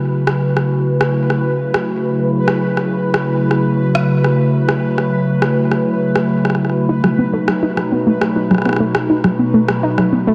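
A warbling, detuned pad opens this intricate, glitchy IDM excerpt, holding sustained chords up front with a slow attack, long release and a nostalgic, vintage lo-fi character, while a bubbling sawtooth texture flickers through random filter steps at a quieter level above it. From 0.3 s an electronic rim click enters in straight 4/4 at 102 BPM in A lydian, trailed by tape echo. The harmony rests on A6 before moving to B7 at 6.9 s, the moment a dusty, mellow pluck enters with evolving arpeggios, its fast attack and short decay colored by chorus, cassette tape wear and tape echo. Chorus shimmers across the pad, texture and pluck, and a lush hall reverb of moderate size surrounds the dark, warm production.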